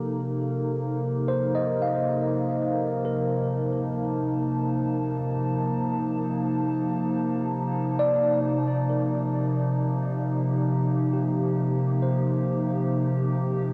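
A warbly, tape-like pad stands up front through this ambient excerpt, holding mellow, detuned chords on Cm9 from C3 to A5 with chorus and its own built-in reverb, while a filter sweep moves across it during the first 8.4 seconds. Beneath it, an analog drone sits in the background on Bb3, fading in with a slow, evolving sawtooth and pulse-width character before it stops at 8.5 seconds. A bright, clean tine electric piano plays quiet arpeggios between G4 and F5, touched with subtle chorus and tape echo. The tempo is a slow 67 BPM in a straight 4/4, and the mood is warm and peaceful. The whole recording sits in a huge, wet reverb with an 8.1-second tail and carries the worn, wobbling pitch drift of an old cassette tape, ending as a cut from a longer piece at 13.7 seconds.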